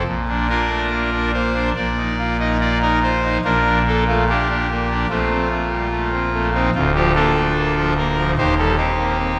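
A wet scoring-stage reverb with a 1.7-second tail surrounds a solo pipe organ, its trumpet stop brassy and bright and placed up front, with audible chiff and a baroque voicing. This majestic yet serene chorale-style passage unfolds with a rubato feel across the full 9.4 seconds, spanning from deep bass notes to the upper treble. The harmony settles on Bb before moving through F/Bb and Bb/D and arriving on Cm/Eb, as though the music continues beyond this cut.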